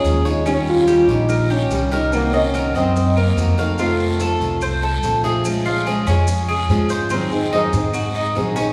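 A straight 4/4 groove at 144 BPM drives this sultry, danceable fragment of Cuban son and guajira in Bb minor. A thumpy pizzicato upright bass sits up front, alongside a dark picked steel-string acoustic guitar and a metallic, double-strung Cuban tres spinning bright arpeggios; a smooth French horn with vibrato carries the classical-style solo melody until 5.2 seconds, over raspy guiro and grainy maracas close by, with very quiet, woody claves sounding distant from 0.5 seconds. The chords move from Eb7 through Cm7b5 and F to Bbm7 and Ab7, and a wet church reverb lends the recording a spacious, hall-like glow.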